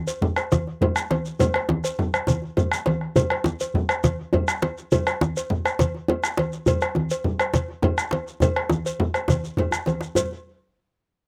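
Powerful and driving, this West African traditional drum ensemble moves at 137 BPM in a straight 12/8, cut from a longer piece. Ringing, low-tuned congas struck with hard hands and a round, vintage-sounding bombo sit up front, joined by a metallic cowbell, a soft-handed, dry djembe and a grainy, mellow shekere, all playing from the opening moments until 10.3 seconds. Captured outdoors with little reverb, the ensemble closes its main groove with a drum fill from 9.7 to 10.2 seconds.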